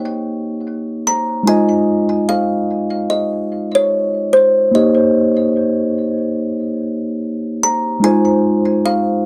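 A plucked kalimba carries the melody in this short, bittersweet reggae excerpt at 73 BPM in F minor, its woody, hollow-box tone ringing up front through a tape echo. Underneath, a mellow tine electric piano supplies clean, direct accompaniment over chords moving between Eb7 and Fm7, with the 16ths swung at 59%. The dry, close 1970s-style studio sound, touched with light reverb, keeps the smooth groove intimate.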